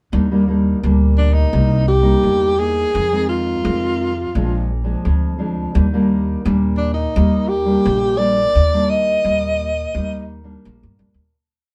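Recorded as a trio playing live in one small room, the sound is close and intimate, with a moderate touch of reverb around the players. This is a joyful, sunny piece of samba and choro in Eb major, moving at an easy 86 BPM in a straight 4/4. The nylon-string guitar plays a classical-style samba accompaniment, thumbing bass notes beneath syncopated plucked chords, its fresh strings giving a warm, clear ring. The upright bass sits up front with a woody pizzicato tone, carrying a samba bass figure through the Ebmaj7, Cm7, Fm7 and Bb7 progression. The alto saxophone enters at 1.2 seconds, close-miked and breathy, singing a motif-based, song-like melody with jazz phrasing and a warm vibrato. A fade-out begins at 8.5 seconds and carries the short piece to its close at 11.3 seconds.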